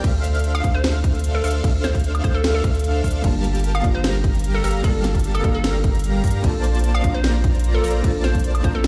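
A huge, detuned supersaw riff, a thick saturated sub bass, a hard-clipped electronic kick and a trap kit with a sharp snare, crisp hats, crash cymbal and woodblock open this emotional, bittersweet future bass excerpt in a swung half-time feel, while an airy, dreamy lead arpeggiates in the background. At 0.5 seconds a hollow, bouncy square pluck enters with the melody, carrying chorus and dub echo, and at 3.2 seconds a soft, round, dark pluck joins as accompaniment with a filter sweep and delay. The pitched parts pump under sidechain over lush ninth chords moving from Dm9 to Gm9 to Bbmaj9, and the whole mix sounds as if played on a big sound system in a bare room.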